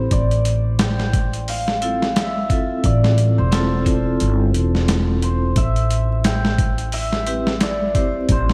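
Smoky and cinematic, this trip hop excerpt moves at 88 BPM in 4/4 with a swung sixteenth-note feel, cut from a longer piece and lasting about 8.5 seconds. A hammered cimbalom carries the melody between A4 and G5, its shimmering tone trailed by tape echo, while a vibraphone struck with medium hard mallets supplies metallic, ringing accompaniment through harmonic tremolo and tape echo. Underneath, a pizzicato upright bass sits up front with a woody, thumpy sound low in its range. The sampler-style drum kit enters at 0.1 seconds, gritty and overdriven with gated reverb, pairing a thumpy kick with a medium-tuned snare and hi-hat, as if re-recorded in a small room. The harmony rests on Dm9/A before shifting to Am7 at 5.6 seconds, all set in a bright 1980s-style digital production with light reverb and vinyl crackle.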